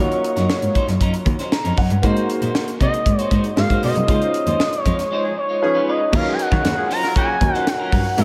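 Polished 1980s jazz-funk pop at 117 BPM in straight 4/4, this bittersweet, nocturnal passage in Eb dorian is cut from a longer piece and moves through Ebm7, Ab7, Dbmaj9 and Db7 before settling on Ebm9. A smooth sawtooth lead with fast attack, vibrato and portamento carries the sustained, expressive melody over a woody, boxy bowed cello bass played by one player with vibrato. A dark, mellow vintage baby grand piano with analog chorus supplies accompaniment and drops in a fill at 1.3 seconds, while a clean, picked electric guitar with subtle chorus plays a riff. A tight acoustic funk kit sits up front with a high-tuned snare, tight kick, hi-hat and crash, and the band hits an accent from 4.1 seconds. A distant, roomy horn section with light vibrato adds a second line from 5.2 to 7.4 seconds, and the whole mix floats in a dreamy cathedral reverb.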